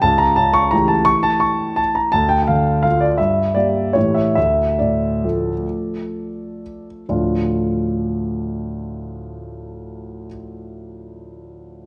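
Nostalgic and wistful, this short classical waltz excerpt in D minor moves in a rubato 3/4 between 120 and 177 BPM. A warm concert grand piano plays alone from 0.0 to 11.9 s, its intimate, natural tone carrying deep bass, long sustain and audible action noise up front in light reverb. It slows from 3.8 to 7.1 s as A7 harmony resolves to Dm, before a brief new section begins.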